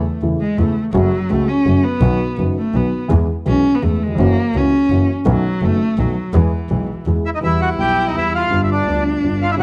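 In a rubato 3/4, this melancholic, passionate tango fragment opens with a close, expressive cello solo from 0.0 to 7.4 s, its warm bowed tone shaped by vibrato and portamento. A mellow baby grand piano and a dark, intimate double bass played sul tasto with an airy bow settle underneath, and a reedy, bright bandoneon steps up front with the melody at 7.3 s as the harmony turns toward E minor and G7. Light reverb gives the cut-from-a-longer-piece recording a dusky glow.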